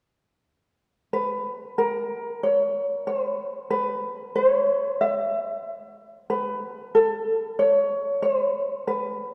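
Hawaiian music at 93 BPM with a lazy swing, this languid, relaxed excerpt features a mellow, light solo ukulele, thumb-plucked and up front, entering at 1.1 seconds and playing until 9.3 seconds in a range from A4 to E5, tuned slightly sharp to A4 = 445 Hz and heard from further back in a wet concert hall with a long 2.3-second reverb tail.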